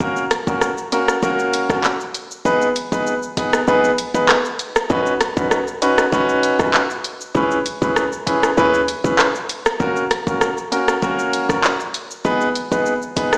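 Dancehall at 98 BPM with a tough, sultry mood, cut from a longer piece and moving through chords from F# and G#m to Badd9 and C#m7. A concert grand piano sits up front with an intimate, polished tone, audible action noise and long sustain, over a short, punchy 808-style bass with a sine body, a noise layer and a fast attack that quickly decays. An electronic afro-pop kit of deep kick, dark hats, handclaps, rim click and shaker is also up front, and the whole mix carries a moderate plate reverb and the stony, small-speaker sound of a big sound system playing in a bare room.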